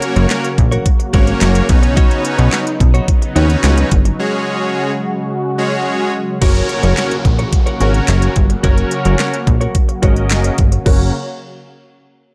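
A punchy, funky plucky analog bass with sidechain pumping sits up front alongside a pop drum kit of knocking kick, fat snare, crisp hats and handclaps, driving this carefree, euphoric dance-pop excerpt in F# major at 108 BPM, while a big bright detuned polysynth and a mellow filtered supersaw swell, both pumping and low-pass filtered, hold chords over F#, Badd9 and F#sus2, a clean direct-recorded electric guitar picks a lush-chorused riff in the background, a break arrives at 4.2 seconds, and a downlifter and filter sweep carry the passage from 6.4 seconds in a dark production with light reverb and digital ambience.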